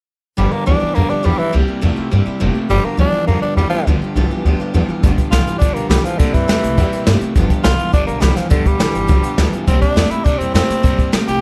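Rockabilly with a rollicking, rowdy drive, cut from a longer piece, where a raspy, gritty tenor saxophone carries the melody up front over a twangy, slightly broken-up electric guitar riff with vibrato, a woody, thumpy pizzicato upright bass, and a full-bodied steel-string acoustic guitar picked in the background, before a brushed drum kit with a boomy kick joins at 5.0 seconds, all under light reverb with some lossy compression artefacts.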